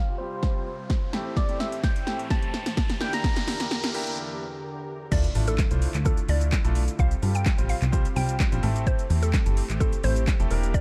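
A dark dance-pop excerpt in D minor at 128 BPM, energetic and bittersweet, builds from a gentle FM struck synth lead, a mellow detuned supersaw pumping in the background, an intimate concert grand piano with audible action noise, a riser and impact, and an overdriven deep house kit with a deep kick, punchy snare and metallic hats, until the drop at 5.1 seconds brings in a woody, warbling mallet-like synth pluck and a funky, up-front analog bass.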